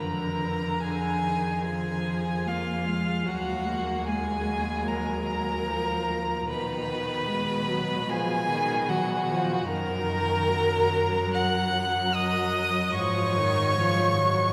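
A single bowed violin carries the melody up front, its rich, smooth tone shaded with vibrato as it sings above the ensemble in this slow, melancholic string quartet movement. A second violin plays an even, close supporting line beneath it, while a single viola, more distant and warm, supplies bowed accompaniment with vibrato. The cello anchors the bass up front with soft attacks, expressive portamento and vibrato. Cut from a longer piece, the elegiac passage moves at 75 BPM in 4/4 with a flexible rubato feel, passing through shifting harmonies before settling into Eb minor from 9.7 s. A cavernous cathedral reverb with a long tail surrounds the quartet, placing it in a church or concert hall.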